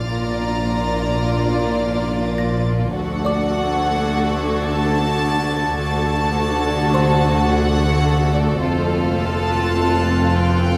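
A moderate scoring-stage reverb surrounds this short, tense cinematic passage, cut from a longer piece, at 105 BPM in an uneasy 5/4 with a straight feel. Two symphonic violin sections carry the melody and a second line, both bowed sul tasto with a soft attack and a pure, floating quality, the melody close and the second line up front. Beneath them a dark, woody viola section with vibrato adds lush accompaniment in the background, while a rich cello section and a double bass section, also bowed sul tasto, anchor the bass. An eerie FM drone built from sawtooth and ring modulation sustains underneath with a metallic, inharmonic edge, slow attack, long release, chorus and its own built-in reverb, and a high, intimate studio violin section with light vibrato adds a faint, warm shimmer of texture. From 2.4 to 8.6 seconds a delicate, tinkling music box glints in the background as the harmony moves from Bb through D to F.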